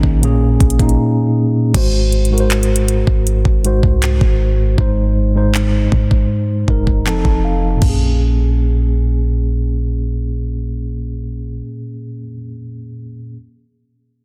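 This is a dry, dense recording with a heavily limited modern master, cut from a longer contemporary R&B piece that feels moody and sensual. It sits in Bb minor at 79 BPM in a straight 4/4. A mellow tine electric piano, heard through its built-in speakers and placed up front, carries the chords from Eb7sus4 through Ab7, Fm7/Ab and F7 to Bbm7, and adds a fill from 6.7 to 7.8 seconds. Beneath it, a clean 808-style bass gives deep, boomy sine tones with a fast attack that decays into a dark low end. A produced electronic drum kit, also up front, brings a knocking kick, metallic hi-hats, handclaps, toms and crash cymbal until it stops at 8.0 seconds. Near the start, the whole texture falls silent briefly from 1.0 to 1.7 seconds.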